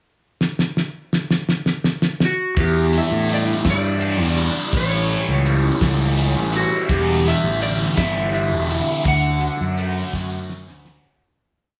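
A dry 70s drum kit with a fat snare and tight kick opens this mysterious, hypnotic psychedelic rock piece in 6/8 with a fill, and a slightly broken-up slide guitar played with fingerpicks through digital delay soon carries hook phrases. At 2.6 seconds a double-tracked fuzz guitar's bright picked arpeggios, a round, punchy, overdriven fingered bass riff and a very quiet, warbling string-machine viola pad join in, and a grainy tube shaker enters at 6.9 seconds before a closing drum fill and fade-out in a small, lightly reverberant room.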